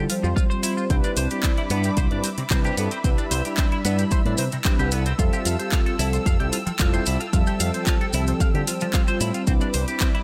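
Polished and lightly reverberant, this groovy, sunny nu-disco excerpt in C major moves at 112 BPM in a straight 4/4, drifting from Fsus2 through Cmaj9 and Fmaj9. A punchy, up-front electronic kick and a house kit with warm hi-hats and handclaps drive beneath a round, envelope-filtered picked bass, while maracas sit close and dry in the background. Mellow, detuned synth brass with chorus, delay and sidechain pumping carries the accompaniment, a bright, twangy twelve-string electric guitar riff shimmers with lush chorus, and from 0.9 seconds a dark, woody symphonic string section holds distant chords.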